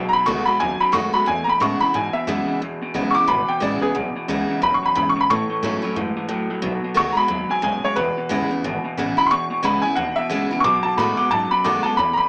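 Upbeat and rowdy, this short, swung rockabilly cut sets a bright, slightly detuned upright piano up front, taking a solo from 2.6 seconds, over a full-bodied picked dreadnought acoustic guitar, a twangy, slightly broken-up electric guitar riff with spring reverb, and a thumpy, woody pizzicato upright bass, all heard through a small-speaker sound with light reverb.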